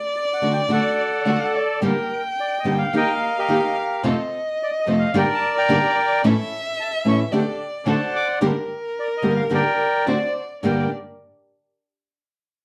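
A reedy, boxy bandoneon carries the melody up front in this dramatic, melancholic tango excerpt in G minor, moving at 109 BPM in 4/4 with a rubato feel. A single bowed violin traces a second line, its expressive tone shaped by vibrato and portamento and finished with a smooth top. Fingerpicked nylon-string guitar sits close as accompaniment, small and warm in its acoustic sound. Behind it, a studio string section plays soft-attack stabs sul tasto, pure and floating in the distant background. A bright silver concert flute, tongued with vibrato and rolled-off highs, adds a brief second line at 1.3 seconds and returns at 10.6 seconds as the harmony arrives on Gm. The chords move through D, Gm, Eb, F and A to a D7, and a moderate club reverb gives the ensemble a lived-in ambience.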